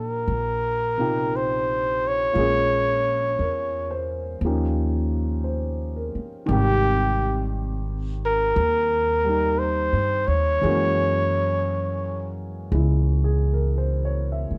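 Close, detailed microphones and light reverb frame this tender, romantic jazz ballad excerpt at a slow 58 BPM with a gentle swing, where a dark, breathy trumpet with light vibrato carries the solo melody up front until 12.4 s over a warm, natural baby grand piano and a woody, thumpy pizzicato upright bass, as the harmony moves from Ebmaj9 to Gb9.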